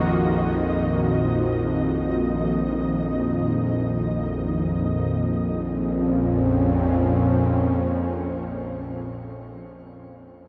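Dark ambient drone in free time and Bb minor, ominous and cavernous, drawn from a longer piece and set in a huge, wet reverb with a dark production. A tense, string-like bowed drone with a bright, detuned sawtooth edge and ring-modulated grit holds the low register up front, while a sweeping, resonant pad of airy, evolving detuned sawtooth chords with chorus and shimmer reverb moves from Ebm/Bb to Bbm at 5.2 seconds. Above them, a flickering, grainy granular texture with shimmer reverb hovers quietly until it stops at 5.2 seconds.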